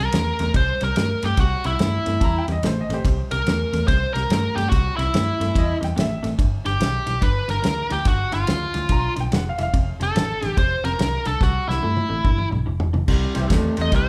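A biting, overdriven lead guitar sits up front with slapback echo, carrying the melody through this swaggering, soulful electric blues shuffle at 144 BPM in C major, cut from a longer piece. Beneath it, a twangy, slightly broken-up guitar through a small old amp plays a low riff, while a round, foam-muted fingered bass and a soul drum kit with a fat snare, tight kick and dark cymbals drive the swung groove. A clear, woody upright piano adds a second line from 2.2 to 6.2 seconds and again briefly near 9 seconds, its action noise audible and intimate. The chords move from C to G and F before returning home, and a drum fill from 11.4 seconds leads into a short lead guitar solo at 13.1 seconds. There, a gritty tonewheel organ with a slow rotary speaker and key click surfaces in the background for a moment, all captured as a band playing live in one room with light reverb.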